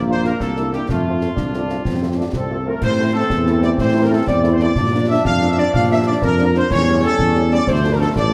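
Set in a reverberant recital hall, this brief fragment of a rousing, proud military-style march for wind band moves at 124 BPM in 6/8, with a distant trumpet section carrying the melody over sustained chords from a loose trombone section, warm horns in the background, a dark, up-front tuba bass and close concert snare, bass drum and sombre clash cymbals, while a small, pure-toned flute group with expressive vibrato adds a second line from 2.3 s as the harmony turns from F toward Dm.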